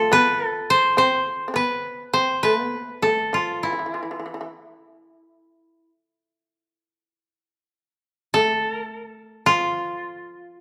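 Austere and still, this short excerpt of Japanese traditional music moves at a slow, rubato 51 BPM in 2/4 on an A hirajoshi scale. A dry, woody koto played with fingerpicks carries the melody up front throughout. Beneath it, a fretless, plectrum-plucked shamisen adds a buzzing, percussive second line that drops out at 4.5 seconds and re-enters at 8.3 seconds, all within the moderate reverb of a recital hall.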